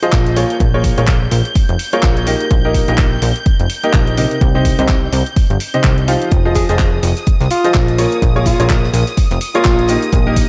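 A clear, slightly worn grand piano riff sits up front in this energetic, soulful piano house cut. It plays between C3 and F5 with short sustain, delay and sidechain pumping for the full 10.5 seconds. Underneath, a punchy electronic kick and a plucky, funky analog bass drive the swung 126 BPM groove. The bass has a sawtooth and pulse-wave tone, a fast attack and a filter pluck, and it also carries sidechain pumping. A tape-warm house kit adds handclaps, hi-hat and shaker, while a dark studio violin section holds soft, sul tasto chords between Eb6 and G6, roughened by vintage 12-bit sampler grit and pumping too. A very quiet, dry 70s kit brings in hi-hat and snare from 6.3 seconds, and at 6.6 seconds a breathy alto saxophone enters with scooped notes, light vibrato, sampler grit and delay. Across the cut the chords move through Bbm7, Eb/Bb, Cm and Fm7, then return to Bbm7 and Eb/Bb, all in a dreamy mix soaked in plate reverb.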